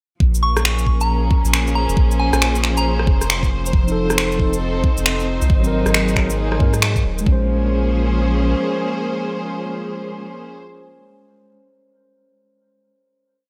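A ghostly, melancholic future garage piece in Bb minor at 136 BPM opens at 0.2 seconds with a lush, bowed string section holding slowly shifting chords, pumping against a muffled, knocking two-step kick and a deep, round sub bass of long gliding notes with tube saturation. A skittering, shuffled beat of electronic shaker, rim clicks and finger snaps joins almost at once, up front and washed in gated reverb, with the 16ths swung at 62%. High above, a soft, pure FM bell plays short answering phrases through chorus, phaser and delay before falling away. From 3.8 seconds a mellow tine electric piano adds sparse, echoing chord stabs in drop2 voicing, its clean tone roughened by 12-bit sampler grit and pumping like the strings. The harmony moves from Bbm9 through F7 and Ab9, and after the drums stop around 7.4 seconds, the strings and electric piano linger on a final Bbm9 chord while the sub bass holds on until about 8.5 seconds. 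The bright, 1980s-style digital production sits in light reverb, with the drums and bass placed close and prominent.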